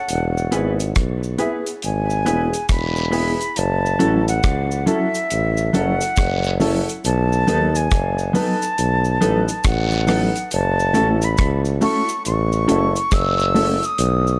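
A light reverb and the ambience of a small room give this short roots reggae excerpt an intimate, close sound. A pure, mellow concert flute carries the melody from the very start, its crisp attack and expressive vibrato trailed by tape echo. Beneath it a tuba, close-miked and up front, supplies a warm, vibrato-tinged bass line. A dry acoustic drum kit with a tight kick, hi-hat and rim click sits forward in the mix, while a vintage, band-limited cabasa and guiro add a faint layer to the swung sixteenth-note feel. From 0.5 seconds a dark, clean electric guitar, fingered and compressed, adds accompaniment colored by harmonic tremolo and tape echo, and a worn, woody upright piano, slightly detuned with audible action noise, places stabs in the background. The harmony moves from E to F#m7, then B7, and returns to F#m7 at 10.5 seconds, keeping the mood hypnotic and meditative.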